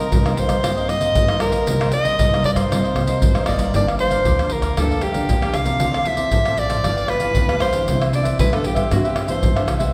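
A wet recital-hall reverb surrounds this short cut from a longer samba and choro piece, giving the recording the airy spaciousness of a church or concert hall. At 116 BPM in a straight 4/4 and C minor, the mood is nostalgic and bittersweet. A clear soprano saxophone carries the melody up front in a close-miked jazz style, with vibrato, subtone and scooped notes. Beneath it, a fingerpicked nylon-string guitar with fresh strings plays classical-style accompaniment, while a mellow, picked cavaquinho sits further back, and a woody pizzicato upright bass holds the low end. Maracas, surdo, pandeiro and tamborim sit up front, played with soft hands over a deep surdo. The harmony opens on Cm7, and a second section begins at 3.7 seconds, moving through Gm7, Dm9 and G6 before resolving to Cmaj9 at 7.9 seconds.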